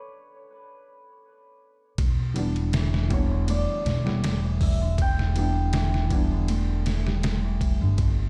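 Trip hop, hypnotic and melancholic, this fragment of a longer piece opens with a shimmering hammered cimbalom melody, ringing through tape echo on its own for the first 2.0 seconds. At 2.0 s a lightly swung groove settles onto an Em7 chord, as a gritty, pitched-down sampler-style drum kit with a thumpy kick arrives up front beside a woody, dark pizzicato upright bass. Moments later a soft felt-muted upright piano adds an intimate accompaniment, with audible action noise, harmonic tremolo and 12-bit sampler grit, while a fingerpicked Celtic harp rings out arpeggios through digital delay, all set in a bare room with large studio reverb.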